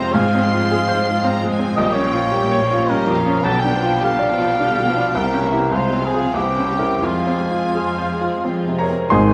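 A clear, up-front baby grand piano carries the melody from the outset of this tragic, passionate romantic excerpt in rubato triple time, joined by a lush symphonic violin section on the melody. Meanwhile, a dark, distant cor anglais and a background studio violin section trace second lines over a smooth studio viola section and a woody cello section on the bass, as the harmony moves through Fm/Ab, Gm7b5/Bb, G7/B and C7b9 before settling on Fm at 7.0 seconds. A mellow clarinet slips in at 8.8 seconds, and at 9.1 seconds an airy flute, a bassoon with light vibrato, a French horn section holding sustained chords and a rich double bass section enter just as the cut ends, all set in a moderate concert hall reverb.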